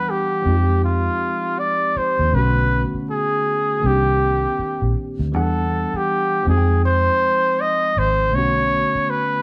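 A breathy, clear flugelhorn carries the melody up front from the start, scooping into notes with light vibrato in a jazz-style solo, while a clean tine electric piano, heard through its built-in speakers, accompanies it. At 0.5 s a dark, round, foam-muted fingered electric bass enters with a punchy, amped vintage tone, moving under a slow 80 BPM neo-soul R&B groove in 4/4 with a 61% 16th-note swing across chords such as Fm9, Bm9, Cm9 and Em9. The soulful, late-night feel comes from the band playing live together in a moderate stone room, its reverb lending the short cut from a longer piece a natural sense of space.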